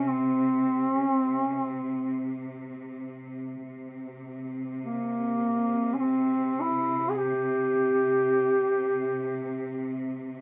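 Longing and mournful, this short passage from a longer Caucasian lament unfolds in free time, its phrases breathing freely in the manner of folk singing. A mellow duduk carries the melody up front as the solo voice, its tone shaded with vibrato and scooped notes, sounding distant and roomy despite its prominence. Beneath it, a string section sustains a low drone on C3, bowed and lush, with a smooth top and expressive vibrato and portamento, sitting well back in the mix. The duduk phrase lasts until 10.0 s, and the strings hold on alone until 10.4 s. The recording has the feel of players gathered live in one room, wrapped in moderate studio reverb, with a softened, rounded high end.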